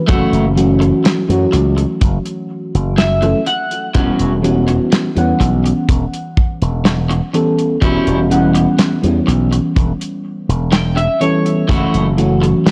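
A gritty, dry hardware recording with cassette-tape character and light studio reverb frames this melancholic, nostalgic vaporwave fragment, cut from a longer piece. A soft, round FM electric piano with a noise layer carries the chords from F#m7 to Em69 through lush chorus and analog delay, while a slightly broken-up, compressed electric guitar picks a riff under the same effects and adds clean fills at 2.5 s and 10.2 s. Underneath, a growly, punchy slap bass with an envelope filter sits up front beside a damped 70s kit of hi-hat and medium-tuned snare with a rolled-off top, anchored by a tight, mid-forward kick in a small room.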